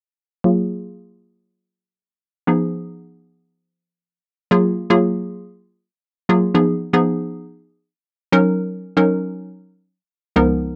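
Bittersweet yet confident, this short pop fragment in straight 4/4 rests entirely on a hollow, bouncy square-wave synth pluck. Detuned and chorused, it plays up front in the accompaniment from 0.4 s with a fast attack and decaying tail, moving through Gbmaj9 and Fm7b5 chords and later settling on Ebm7. A filter sweep shapes the pluck until 4.5 s, and the dry, close 1970s-style studio sound carries light reverb.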